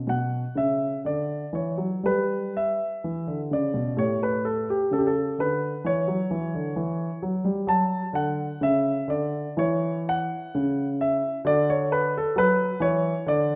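Uneven, rubato beats in 4/4 at about 63 BPM give this baroque-style suite movement a flowing, dance-like sway, heard as a short passage from a longer classical piece in D major tuned to A4 = 442 Hz. A solo concert grand piano, warm with a deep bass and placed up front, plays from 0.0 to 13.6 s across a range of A2 to A5, moving through Bm, Em/G and A7 to D, then C#madd11 and back to D. The instrument sits in a wet recital hall reverb with a 1.4 s decay.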